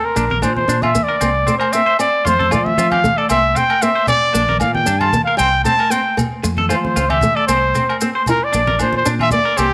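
Sunny and warm, this excerpt of a highlife guitar band moves at 115 BPM in 4/4, with a light swing on the sixteenths and a home in C mixolydian. A breathy trumpet carries the melody up front, played softly and intimately in a pop style with a light vibrato and a whispered, soft-attacked tone. Beneath it, a fingerpicked flamenco guitar supplies acoustic accompaniment, while a bright, twangy clean electric guitar picks compressed arpeggios through a tape echo from 0.2 seconds. A fingered electric bass adds a round, punchy, dark low end, and the percussion fills in with grainy maracas, thick-skinned medium-tuned congas and ringing agogo bells set in the background. The harmony cycles through Bb, C13, F and C7, and the whole band sits in a moderate echo chamber reverb that gives it a roomy studio glow.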